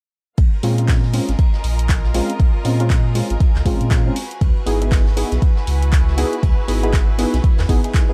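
A dark, warm mix with a small-room ambience opens this hypnotic, smooth deep house excerpt, which moves at 119 BPM in 4/4 with a 60% swing on the sixteenths in Bb minor. From 0.4 seconds, an up-front, deep electronic kick anchors the groove, joined by a layered, produced deep house kit of handclaps and hi-hat, both re-recorded in a small room. Beneath them, a distant jazz brush kit sits in the background with dark cymbals, a medium-tuned snare and hi-hat, its high-passed room sound adding a roomy acoustic shade. A round, mellow sine sub bass with tube saturation and sidechain pumping holds the low end. A close, biting symphonic string section bowed with light vibrato spreads an intense, rich texture, while from 0.6 seconds detuned sawtooth analog keys stab through chorus, delay, filter sweeps and a gritty 12-bit sampler character, both pumping under sidechain compression. The harmony shifts from Bbm9 to Dbm9 at 4.2 seconds, keeping the mood hypnotic and warm.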